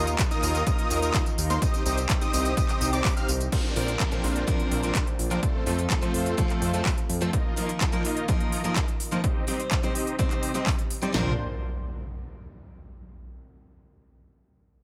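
Uplifting and euphoric, this festival progressive house cut in Bb major runs at 126 BPM, opening on a drop where a huge detuned supersaw riff, a nasal, warbling unison lead arpeggio that stops at 3.3 seconds, a lush, airy pad in the background and a fat analog bass all pump against punchy, overdriven kick and snare, toms and crisp tape-warm hats, claps, tambourine and crash. From 3.5 seconds a filter sweep on the supersaw runs under a downlifter, and at 3.8 seconds a bright picked steel-string acoustic guitar joins with dub echo. The bass drops out at 7.3 seconds and returns with an impact at 11.1 seconds as the chords cycle through Ebsus2, Cm, Bbadd9 and F in light digital ambience.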